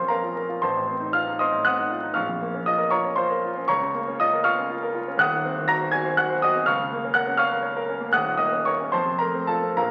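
A clear, polished concert grand piano with deep bass and short sustain sits up front in this stormy, bittersweet romantic character piece for solo piano, moving in a rubato 6/8 at roughly 68-83 BPM in Bb minor, its chords turning from Bbm through diminished and Ebm7 colours toward F by 8.9 seconds, all heard through a wet recital hall reverb and the crackle of a very old 78 rpm record in this short cut from a longer work.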